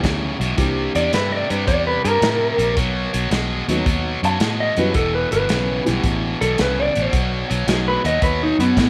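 This electric blues shuffle in E minor rolls along at 110 BPM with a swung 4/4 feel and a smoky, soulful mood, moving through E5, C7, B7, Em and back to B7 in a short cut from a longer piece. A soul drum kit with a tight kick, medium-tuned snare, hi-hat and a rolled-off top sits under a round, foam-muted fingered electric bass, while a cranked stack guitar plays a bright, overdriven picked riff up front. A dark upright piano adds woody, boxy accompaniment with short sustain until it stops at 8.0 seconds. From 1.0 seconds, the loudest part, an electric guitar through a small old amp, carries the melody as a solo with a slightly broken-up, compressed, lo-fi tone. A moderate echo chamber reverb and small room ambience give the whole passage an intimate, late-night atmosphere.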